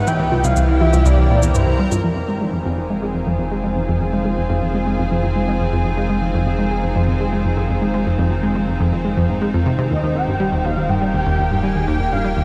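In a straight 4/4 pulse, this expansive, cosmic slice of sequencer-driven ambient space music sets an up-front, round, detuned analog pluck riff with chorus and analog delay over a deep sine sub bass and a lush, thick unison pad of bright sustained chords, while electronic shaker and congas sound only through the first 2.0 seconds and a breathy, flute-like synth lead with vibrato and ensemble chorus appears briefly at the start and returns at 9.9 seconds, the whole mix bathed in the huge reverb of a vast, echoing space.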